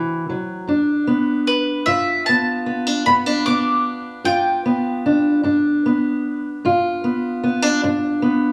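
Soulful, laid-back blues in a slow 12/8 at 50 BPM in G mixolydian, where a dark, boxy fingerpicked parlour steel-string acoustic guitar sits up front throughout, moving from a rootless D7 to G7, while a mellow, woody mandolin with double strings carries the picked melody from 1.5 to 5.8 seconds, all played live together in one room with a moderate large-studio reverb, in a fragment cut from a longer piece.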